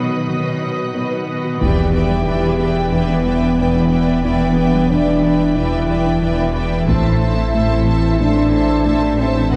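A mellow French horn section holds sustained chords in this vast, futuristic hybrid orchestral and electronic film cue in E minor at 91 BPM. It sits over a calm, organ-like pad with ensemble chorus, lush bowed violas with portamento, a tight, nasal sawtooth synth arpeggio and a focused cello bass. At 1.6 s the harmony moves from B to Em7, and smooth violins, clear double basses, a thick saturated sub bass and heavy-stick taiko drums join, with the taiko returning at 6.9 s on Am, all set back in a reverberant scoring stage.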